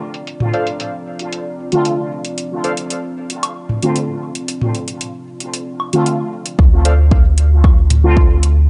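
A resonant, juicy polysynth carries this hazy, deep dub techno excerpt, entering at 1.7 seconds with bright, detuned chorused stabs that pass through a phaser, 12-bit sampler grit and dub echo while a filter sweep runs through them. At 114 BPM in a straight 4/4 and D minor, a dark ambient pad opens on a Dm7 chord with slow-attack, moody sustained tones, ring-modulated and wave-folded, breathing with sidechain pumping under its own chorus and reverb. Overdriven metallic electronic hi-hats with filtered snare and room tone sit beside tape-toned electronic toms and woodblock from a small room, their pumping percussion trailing dub echo. A warbling lo-fi synth keys riff adds nostalgic, airy, mellow decaying notes with chorus and echo. At 6.6 seconds the harmony drops away as an overdriven, deep electronic kick and a round, sine-like analog bass on D2 arrive up front, the bass pumping beneath the stabs. 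The production is dark and warm, with light digital ambience and a top end capped at 11.0 kHz.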